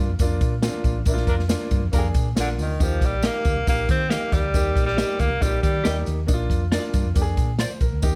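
Joyful and uplifting, this brief cut from a longer uptempo 1960s-style soul piece at 138 BPM rides on airy big-band drums with a punchy kick, a round, foam-muted electric bass and an intimate baby grand with audible action noise, while a jingly tambourine sits in the background, a mellow horn section with octave doubling joins a band accent from 1.3 seconds, a clear tenor saxophone with slapback echo carries the melody from 2.4 seconds, and dark, picked electric guitar stabs with lush chorus arrive at 3.2 seconds, all moving from Bb to Eb and back under light reverb.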